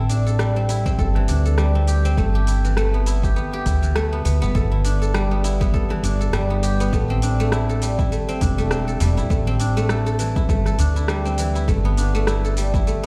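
Played through a big sound system in a bare stone room, this hypnotic, mystical organic downtempo fragment, cut from a longer piece, moves at 101 BPM in A minor with a swung sixteenth feel: an up-front guzheng, plucked with fingerpicks, rings out silvery arpeggios through a digital delay; a woody pizzicato upright bass sits close beneath; and a layered deep house kit of metallic hi-hats, rim click and shaker joins a punchy electronic kick, both overdriven, as the harmony moves from Am7 to G69 and returns to Am7 at 6.9 seconds.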